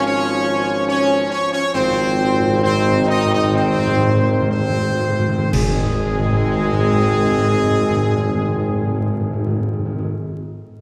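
Regal and majestic, this slow classical ceremonial fanfare, cut from a longer piece, sets a warm, softly attacked trumpet section up front on the melody over mellow French horns, a dark, distant trombone section and a smooth-topped solo tuba, all with light vibrato except the horns, as calf-headed timpani struck with hard mallets enter at 1.7 seconds with an articulate fill while the music slows, bright, close clash cymbals and concert bass drum punctuate a band accent at 5.5 seconds, and the whole sits in a reverberant scoring-stage sound laced with vinyl crackle.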